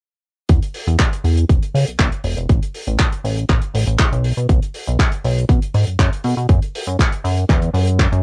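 A dry home cassette recording carries this sunny, groovy nu-disco cut, moving at 120 BPM in a straight 4/4 in E major. A glossy, nasal chorused synth bass sits up front from 0.5 seconds, its retro pulse-wave and sawtooth tones shaped by a filter pluck, a moving notch and pulse-width modulation, ranging from E1 to C#3. Beside it, a punchy, layered electronic kick with a tape-warm, small-room character drives the beat, while a damped 70s acoustic drum kit adds handclaps and hi-hat from a quieter position.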